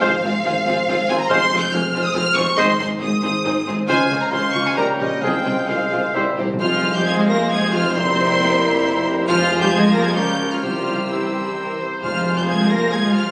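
Restless and stormy, this fast romantic orchestral passage in F minor moves in 3/4 at 127-142 BPM with a rubato feel, led by a lush, focused violin section singing the melody up front with rich vibrato. Around it, a bright oboe, a clear clarinet, an airy, very quiet flute ensemble and a soft second violin line weave supporting parts, while bassoon, violas with portamento, and dark, very quiet French horns and barely audible trombones fill in the harmony over a ringing, thumb-plucked harp and mellow trumpet stabs. Cellos, woody double basses and a distant tuba anchor the bass, and round, soft-mallet timpani enter at 1.3 seconds and return from 5.2 seconds, all heard in a moderate hall reverb with a compressed, phone-in-the-room sound.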